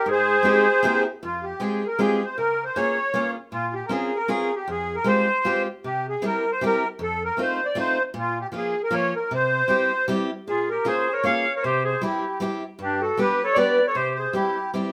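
A reedy, sweet accordion carries the melody up front through this whirling, bittersweet musette waltz, its light tremolo tuning lending a boxy, small-room character to the lead. Set in F harmonic minor at 155 BPM in 3/4 with a lilting swing, the piece is a short cut from a longer work. A bright, vintage clarinet in a classical style adds a second line, sounding only briefly at the very start and returning at 10.5 seconds to close out the passage. Underneath, a picked steel-string acoustic guitar sits up front with an auditorium glow, laying down the accompaniment from low in its range. The harmony moves through chords such as Fmadd9, Db6, Bbmadd9 and F7, with C chords recurring throughout and a G turning up late. A wet studio reverb with a short decay wraps the ensemble in a lively, close-knit space.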